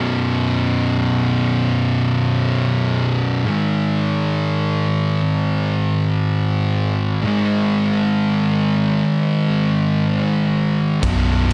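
A dark, warm production with a large studio reverb frames this sludgy, ominous stoner and doom metal fragment in free time, as two thick, up-front fuzz guitars grind out a low riff over B5 and G#5 chords from the start, joined only at 11.0 s by a growly, overdriven picked bass and a distant, roomy drum kit with a punchy kick and bright ride cymbal.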